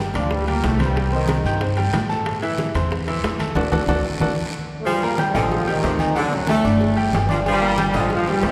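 A driving, straight 4/4 salsa groove is carried by a woody, thumpy upright bass on gut strings, a bright baby grand piano with audible action noise, ringing timbales and agogo bells, compressed, low-tuned congas, very quiet tight bongos and cowbell, and a raspy guiro, set in a church-like hall with long, wet reverb. A brilliant, close-miked trombone section plays the fiery melody briefly near the start, then returns at 4.8 seconds during a band accent that begins at 3.6 seconds, and a punchy saxophone section with vibrato enters on a second line at 4.9 seconds. The recording is cut from a longer piece.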